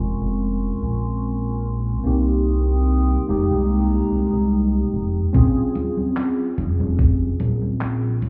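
Melancholic and hazy, this slow 73 BPM vaporwave excerpt in Bb dorian with a light 16th-note swing opens on a warbling, nostalgic 12-bit-gritty pad that carries a filter sweep over chords moving from Bbm9 through Cm7 and Fm11, alongside a mellow, clean tine electric piano with analog chorus and delay and an up-front glossy, detuned synth bass. At 5.3 s the pad stops, and a tape-toned, detuned 8-bit drum machine of filtered congas, handclaps and hi-hat enters together with a thumpy electronic kick that drops out at 7.2 s. Everything is heard muffled as if through a wall, in a concert-hall reverb with a cassette sheen.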